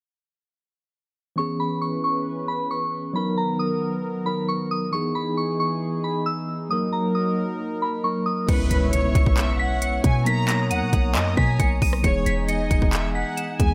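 An eerie, dark half-time trap excerpt opens at 1.4 s with a soft, warbling FM synth bell melody treated with chorus, phaser and tape echo, set over a clean tine electric piano with medium tremolo and a detuned sawtooth analog pad, until at 8.5 s a lush, distant bowed violin section with tape echo, a deep, boomy sine 808 bass and an up-front trap kit with a hard-clipped kick and crisp hats arrive, joined a moment later by a very quiet electronic impact, the whole mix sitting in light reverb.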